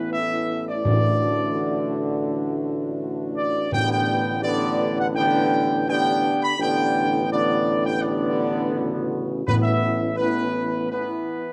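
This classical brass excerpt, cut from a longer piece, moves at 83 BPM in a straight 4/4 and carries a majestic, triumphant mood. A dark trumpet section sits up front with the melody, its smooth top ranging from B4 to B5, while a French horn section with light vibrato holds tight sustained chords in the background. A trombone section, also gently vibrato-tinged, adds sustained chords beneath, and a solo tuba with a vintage, warm vibrato anchors the bass on a low A. Timpani struck with hard mallets enter at 0.9 seconds, articulate and close on their plastic heads, and return briefly at 9.5 seconds. The harmony moves from Asus2 through D/A and G/A before settling back on Asus2, all captured with close, detailed microphones and light reverb.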